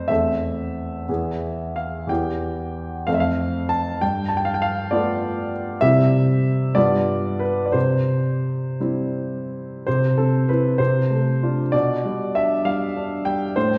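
Brooding and bittersweet, this romantic character piece for solo piano unfolds in a rubato 6/8 at roughly 54-68 BPM in C major, its clear, intimate grand piano ranging from E2 to A5 with audible action noise as the harmony drifts from A minor and E minor colours toward a settled C major before turning to a new passage at 9.9 seconds, all set in a wet recital hall reverb heard from further back in the room in this short excerpt from a longer work.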